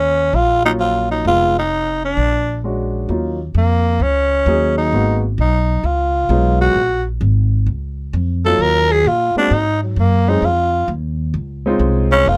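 Small-group swing and bop jazz in E-flat minor at 131 BPM with a late-night, moody feel, where a raspy, growling tenor saxophone with scooped notes carries the melody up front and takes a solo from 3.1 seconds, an upright bass plays woody pizzicato lines beneath, and a polished concert grand piano enters at 0.6 seconds with accompaniment, all in a dark production with light reverb.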